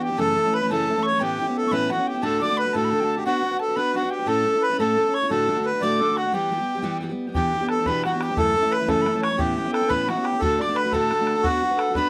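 A reedy, close-miked accordion carries the melody of this driving, wild Celtic jig in 6/8 from the first moment, with an airy tin whistle adding a higher second line full of tongued chiff and vibrato, and a full-bodied picked steel-string guitar giving up-front accompaniment with audible finger squeak throughout, while a boomy bodhran joins at 7.3 seconds as the phrase repeats in a moderate booth ambience.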